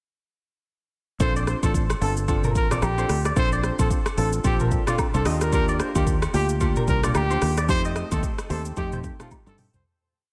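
At 1.2 s a short, romantic and joyful afrobeats piece in Bb major begins at 111 BPM, with swung sixteenths. A close-miked trumpet with light vibrato plays a syncopated pop hook over the Bbmaj9, Ebmaj7 and F9 harmony. An electronic afro-pop drum kit sits up front with a deep, soft kick, smooth hi-hats, syncopated rim clicks, shaker and toms. Alongside it, a bright, punchy fingered electric bass bounces through a syncopated line with slides. Round, detuned analog keys with a filter sweep and chorus add decaying syncopated chords, while agogo bells, woodblock, tube shaker and group handclaps tap out a quiet timeline in the background. From 1.4 s a clean, twangy electric guitar repeats an interlocking figure through a diffuse ambient delay, the same delay that trails the trumpet. The dreamy church-reverb mix begins to fade out at 7.7 s, and a drum fill arrives at 9.3 s.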